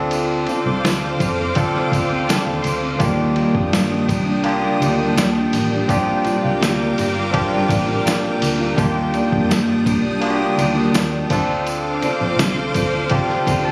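Hazy and dreamy, this short cut from a longer indie bedroom-pop piece moves at an unhurried, straight 4/4 pace. A barky tine electric piano sits up front with a cassette-tape color, adding brief fills from 1.6 to 3.0 seconds and again at 13.1 seconds, while a twangy twelve-string electric guitar shimmers through lush chorus and a warbly pitch drift. Above them, a silky string machine holds slow-attack sustained chords with ensemble chorus, and a foam-muted fingered electric bass gives a round, punchy, dark low end. A muffled, pitched-down sampler-style drum kit with a thumpy kick, medium-tuned snare, hi-hat and ride cymbal keeps time alongside a jingly, close and dry tambourine. The chords drift from Dm7 to Ebmaj7 and Bb6 before circling back, all heard through light reverb with the intimate feel of a phone recording in the room.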